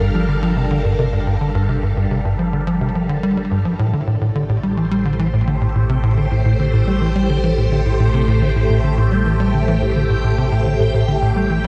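Ambient, sequencer-driven space music at 107 BPM in 4/4, cosmic and expansive, where a tight, punchy sawtooth-and-square sequencer bass riff with a plucky filtered attack and subtle chorus and delay drives up front beneath swirling, bright vintage string-machine chords soaked in ensemble chorus and phaser, all anchored by a deep, round sine sub bass, moving from Gm7 to Am7 at 3.8 seconds in a dark production with a moderate plate reverb, in an 11.7-second excerpt cut from a longer piece.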